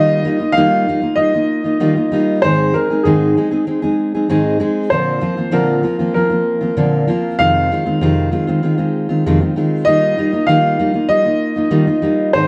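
A straight 4/4 pulse at 97 BPM carries this sunny, heartfelt acoustic pop excerpt in Eb major, tuned to A4 = 438 Hz. A full-bodied, fingerpicked steel-string jumbo guitar sits up front as accompaniment, while a woody, natural upright piano carries the melody above it through Ebadd9, Ab, Bbadd9 and Fm7 before returning to Ebadd9 near 9.9 seconds. Moderate studio reverb and a dark, warm production round off the sound.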